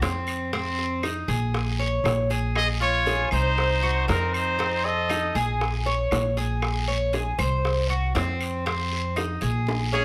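A straight 4/4 groove at 118 BPM drives this warm, nostalgic excerpt of Cuban son and guajira in Bb minor, with tight, high-tuned bongos played with soft hands, a raspy guiro and woody claves tucked in the background entering at 0.3 seconds. Up front, a picked Cuban tres spins arpeggios on its metallic double strings, some doubled at the octave, while a thumpy, dark upright bass anchors the low end with woody pizzicato. From 2.6 to 5.4 seconds, a breathy trumpet carries the melody with soft attacks, scooped notes and vibrato, its whispered, intimate tone set forward and touched by slapback echo. A bright, punchy trumpet with a vintage edge and light vibrato plays a second line beneath it, and both horns return briefly at 9.9 seconds just as a drum fill closes the passage. The harmony moves through Csus4, F5, Bbm7, Cdim and F7 before circling back, all set in a light reverb.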